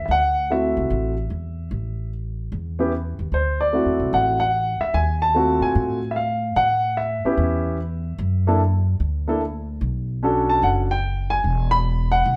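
This jazz piano trio fragment, cut from a longer piece, has a relaxed, swinging mood in 4/4 with swung eighth notes. A warm grand piano carries the melody from 0.0 to 12.4 seconds, its intimate, natural tone sitting up front with the soft clatter of its action audible and a touch of plate reverb around it. An upright bass plays pizzicato underneath for the whole passage, woody and warm with steel strings, also placed up front but a little lower in level than the piano. The harmony moves through colorful chords such as D9, D#dim7, A9 and Bm7 before settling on Eadd9. A moderate club reverb frames the pair, and the overall sound feels as if heard from further back in the room.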